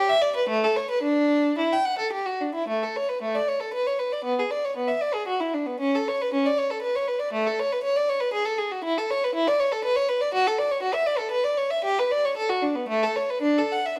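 A single bowed violin carries this radiant, dance-like classical movement, written in the manner of a baroque suite for unaccompanied violin. Its tone is warm and smooth, with vibrato and an even line, and the instrument sits close and up front as it moves between A3 and G5. The music is in 3/4 at 105-123 BPM, played with a rubato feel that lets the dance pulse breathe. It opens in A major, shifts to D major at 8.8 s, and restates its opening idea at 2.7 s. A moderate stone-room reverb gives the space a sense of distance, as if the listener stands further back in the hall, across this 14-second excerpt from a longer piece.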